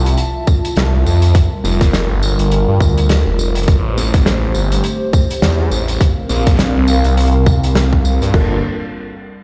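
Playful and gritty, this glitch hop excerpt rides a swung 4/4 groove, with an up-front overdriven electronic kick landing at 0.5 seconds over a loose indie drum kit with dark cymbals and a rolled-off top, plus a jingly tambourine. A swirling, thick detuned saw bass drenched in phaser and tube saturation anchors the low end, while a deep, moody analog pad sustains chords through Fmaj7, Gm7, Am7 and C7sus4, carrying chorus, 12-bit sampler grit and sidechain pumping. At 8.3 seconds a mellow, boxy grand piano enters with brief stabs on Gm7, coloured by tape echo, and the whole mix sits in a large, bare-room studio reverb.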